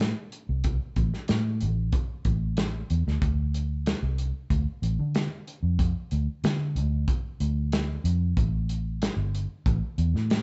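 A vintage electric bass, fingered and foam-muted, holds down the low end of this short excerpt of straight-eighth soul blues, its round, punchy tone running through an amp and sitting dark and up front between G1 and D3. Beside it, an acoustic soul drum kit of hi-hat, kick and snare plays for the full 10.4 seconds, with a medium-tuned snare, a punchy kick and a smooth, shadowy character from a small room. The groove moves at 93 BPM in 4/4 with a straight feel, set in A minor, and the mood is mournful and soulful. The two parts sound like a band playing live in one room, touched by light reverb, with nothing above 7.9 kHz. Cut from a longer piece, the recording stays within a single section from start to finish.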